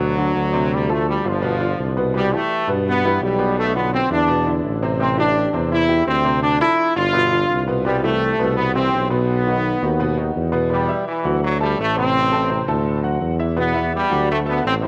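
Latin salsa at a driving 168 BPM in E minor, this passionate excerpt puts a brilliant, tight trombone section up front on the melody with vibrato and a punchy pop style, while a solo tuba carries the bass with its own warm, vibrato-laden tone. Behind them, a clear, woody upright piano plays accompaniment in the background, its worn, slightly detuned sound ringing with long sustain. Moderate plate reverb fills out the sound, and at 10.7 seconds the harmony moves from jazzy seventh-chord changes to a plainer minor-key passage built on Em and D.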